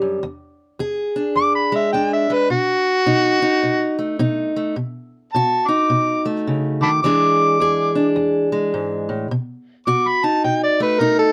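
Soulful and swaggering, this short excerpt of acoustic country blues moves at 106 BPM in 4/4 with a strong swing on the eighth notes, set in E mixolydian. A fingerpicked steel-string acoustic guitar with old strings opens the piece and carries the accompaniment throughout, its woody, boxy parlour tone sitting up front in the mix. At 1.4 seconds an amplified, overdriven harmonica enters to take the solo, its gritty voice colored by light vibrato and tongue slaps in a jazz-inflected style, placed slightly louder than the guitar. The harmony moves between E7 and B7, touching B7 at 2.5 and 9.3 seconds. Close, detailed microphones and little reverb give the duo an intimate, in-the-room presence.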